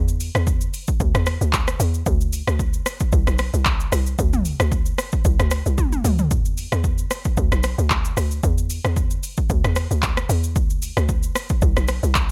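Deep and hypnotic, this amapiano excerpt at 113 BPM in 4/4 with a light 16th-note swing pairs a hollow, bouncy log drum bass, percussive with a fast attack and decaying FM tone over a noise layer, against an up-front, overdriven deep house drum kit of punchy kick, handclaps, hi-hat, rim click, shaker and toms, with a drum fill at 5.8 seconds, all in a dry sound.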